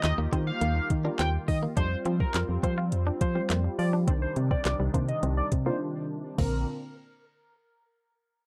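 Euphoric and upbeat, this short dance-pop clip in Bb major moves at 104 BPM over Ebadd9, Fsus2 and Cmadd9 chords, with a filter sweep running until 6.4 seconds and a break at 5.8 seconds before landing on Bbadd9 at 6.4 seconds. A bold, retro octave-doubled sawtooth lead carries the melody with chorus, tape echo and vibrato, while a punchy, round FM bass and a smooth R&B drum kit with a woody snare, metallic hats, handclaps and crash sit up front. Beneath them, a lush detuned unison pluck hovers in the background, a filtered supersaw swell holds evolving sustained chords through a phaser, and a twangy direct-recorded clean electric guitar plays a riff under lush chorus, all captured in a dry, close 1970s-style studio sound.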